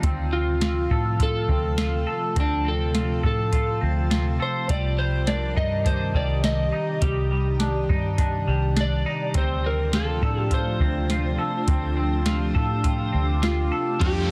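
A dense, heavily limited modern mix sits in light digital ambience, giving this short, haunting dream pop passage a hazy, enclosed glow. A soft vintage rhythm box sets a straight 4/4 pulse with a deep kick, crisp snare, metallic hats and ride cymbal, all roughened by overdrive and re-recorded in a small room, while a dark, foam-muted fingered bass sits round and punchy beneath it. An airy, detuned pad holds sustained chords with a slow attack, ensemble chorus and built-in reverb, as a bright, twangy clean electric guitar picks arpeggios through lush chorus and tape echo over a Dm7 to Cmadd9 and back to Dm7 progression. From 0.3 seconds a slightly broken-up slide guitar carries the melody with its own tape echo, and at 5.3 seconds a ringing, band-limited vibraphone with medium motor vibrato enters far in the background. Just before the cut, at 14.0 seconds, a biting, double-tracked overdriven guitar appears briefly with tremolo and chorus.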